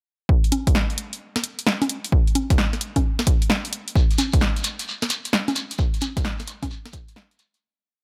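A dry, up-front and tape-warm UK garage piece at 131 BPM with a moody, skippy swing, built on a punchy analog two-step electronic kick and a drum machine of skipping swung hi-hats, snares, rims and congas, joined at 4.0 seconds by a grainy, band-limited shekere in hand-played sixteenths before the whole drop fades out from 5.2 seconds.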